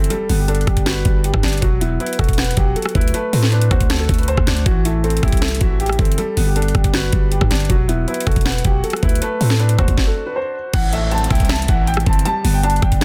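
Menacing and hard-hitting, this half-time trap cut at 158 BPM in A dorian sets a dark, boxy grand piano melody with delay over a felt-muted upright piano with audible action noise, a growling, buzzy 808-style bass and a knocking, up-front trap kit of sharp clipped snare, metallic hats, finger snaps, rim clicks and crash, all pressed into a dense, dry, heavily limited master, with a background impact opening the clip and a stop at 10.0 seconds before the closing section arrives at 10.7 seconds, where a downlifter follows at 10.8 seconds.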